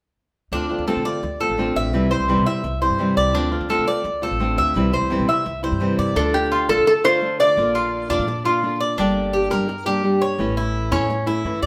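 A wet large-room reverb surrounds this sultry Latin excerpt in D minor at 170 BPM, where an up-front fingerpicked nylon-string guitar, a bright, doubled-string Cuban tres playing arpeggios and a woody pizzicato upright bass carry a Dm7 to C vamp before a nasal, metallic resonator slide guitar takes the melody from 6.2 to 8.8 seconds over Dm, Bb, Gm and A.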